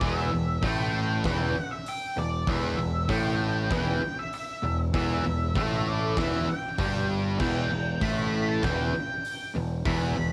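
Dark and angsty, this short cut from a longer quiet-loud alternative rock piece sits on a single E minor chord for about 10 seconds. A dark octave-fuzz lead guitar carries the melody high over a stack of low riffing guitars: a compressed, bright fuzz guitar, a double-tracked distorted electric guitar in the background, and a very quiet crunchy overdriven guitar. A growling, overdriven picked bass and a huge arena drum kit with a punchy kick, fat snare and bright cymbals drive it all, while cassette tape grit on several parts and small room ambience give it a homemade feel.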